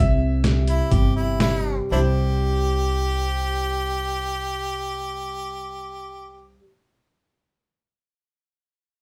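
Honky-tonk and classic country in C major at 114-133 BPM, this sunny, nostalgic fragment of a longer piece slows down over its first 1.9 seconds as a brilliant upright piano carries the melody with slapback echo from the background, a full-bodied picked steel-string acoustic guitar with finger squeak holds the accompaniment over a woody, dark pizzicato upright bass line, a gritty, pitched-down sampler-style drum kit with a thumpy kick sits up front only from 0.4 to 1.5 seconds, and a clear, jazz-style harmonica solo with vibrato, tongue slaps and scooped notes enters up front at 0.7 seconds, all heard from further back in a moderate studio room.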